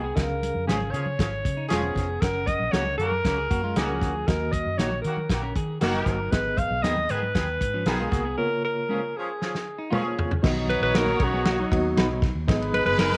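A breathy, subtone alto saxophone carries the melody up front from the first moment, over a distant, loose horn section, a reedy, worn electric piano with fast tremolo, a twangy picked guitar riff and a dark, foam-muted fingered bass in this uplifting, 1960s-style uptempo soul excerpt. A soul drum kit with a fat snare and punchy kick enters at 0.2 seconds, joined by very quiet, soft-handed congas and background stabs from a clean semi-hollow guitar. After a drum fill, the piece moves into a new section at 10.4 seconds, all set in moderate spring reverb and small room ambience.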